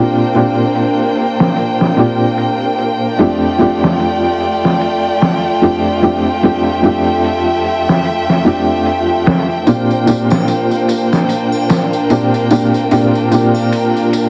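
A felt-muted upright piano and a studio violin section open this dark, brooding trip hop fragment together. The piano sits up front with a soft, boxy tone, short sustain and audible action noise, colored by tremolo and tape echo. The violins hold sustained chords with vibrato and expressive portamento over a slow 74 BPM pulse in 4/4, with a swung 16th-note feel. A gritty, pitched-down sampler-style kit arrives at 0.3 seconds, its hi-hat, medium-tuned snare and kick all softened by low-pass filtering. At 9.7 seconds a close, dry layer of tambourine and triangle slips in low in the mix as the harmony returns from F69 to Bb69. Light reverb and small room ambience sit beneath a heavily compressed, radio-like sound with vinyl crackle, tuned to A4 = 439 Hz, in a passage cut from a longer piece.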